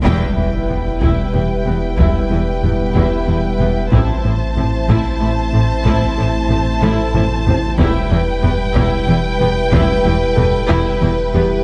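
Lush, vibrato-rich violins carry the melody over a softer second violin line and smooth violas in this vast, relentless hybrid orchestral and electronic film cue in E minor at 62 BPM in 6/8, where dark, distant French horns and a hollow, chorused pad sustain Em and Am chords, a focused cello section, a thick saturated sub bass and very quiet bowed double basses anchor the low end, a punchy, wave-folded analog bass plays a riff, a vintage-toned grand piano adds delayed texture, an electronic impact hits at the opening, and a hard-stick taiko ensemble in a large room drives the pulse with a fill at 6.8 seconds.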